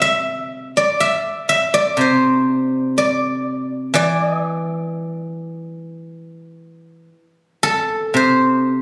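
A solo guzheng, bright and silvery with ringing fingerpicked notes sitting up front, opens this contemplative, elegant fragment of Chinese traditional music, moving in a free rubato across a span from C3 to E5 and bathed in a moderate concert hall reverb for its 8.8 seconds.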